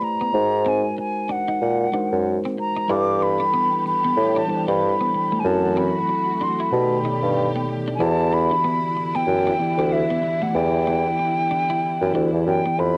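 A swung 94 BPM groove in 4/4 sets up this soulful, late-night R&B excerpt in E minor, where an airy, hollow concert flute with vibrato carries the melody up front, joined by a clean, picked electric guitar second line touched with subtle chorus. A mellow tine electric piano supplies accompaniment while a classical-style bassoon, thickened by tube saturation, holds the bass from 0.3 seconds, and a bowed sul tasto string section enters at 2.9 seconds with soft, intimate sustained chords. Chords move from G#9 through G6, F#m7b5 and B7alt to a closing Em9, all wrapped in moderate studio reverb and the gentle haze of a cassette home recording.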